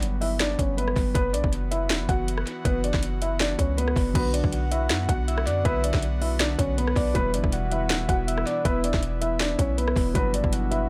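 A felt-muted upright piano carries the melody from 0.2 seconds, soft and intimate with audible action noise, over a dark, melancholic half-time trap groove in B minor at 160 BPM, where an up-front electronic kit with a hard-clipped kick, sharp snare and metallic hats rides on tape echo beside a deep, boomy 808-style bass. An airy, breathy pad holds sustained chords throughout, and from around 4.1 seconds a dark concert grand piano settles in the background as accompaniment, joined at 4.5 seconds by a round, octave-layered synth lead with vibrato and chorus as a second line. The echo-heavy mix stays dry of reverb, and the harmony moves from Gmaj7 and F#7sus4 to Bm and Em in this excerpt from a longer piece.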